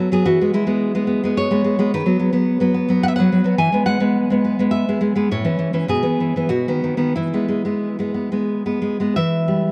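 Dark production and a huge ambient reverb with a 9.3-second tail surround this brief, nostalgic romantic passage for solo classical guitar, where an up-front, full-bodied nylon-string guitar with fresh strings is fingerpicked in a rubato 3/4 at 88-109 BPM in E major, its finger squeak audible as the harmony moves from E through B5, A and B back to E before turning to E minor at 9.1 s.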